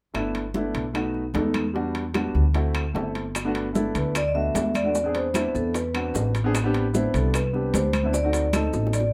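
A straight 4/4 groove at 150 BPM drives this sunny, sophisticated Afro-Cuban jazz excerpt in G major, cut from a longer piece. Congas, bongos, timbales and claves play from the start: bright, high-tuned congas struck with hard hands, round low-tuned bongos, ringing metal-shell timbales, and woody claves set back in a large room. Up front, a dark, thumpy pizzicato upright bass on gut strings pairs with a natural-sounding grand piano in accompaniment, moving through G6, B7, Em7 and D7 before the harmony opens into Gmaj9, E7b13, Am11 and D7b9. Grainy, mellow maracas enter at 3.4 seconds, and at 3.8 seconds a metallic vibraphone, played with medium mallets and its motor off, takes the melody. A drum fill at 8.7 seconds closes the passage, all under a light reverb.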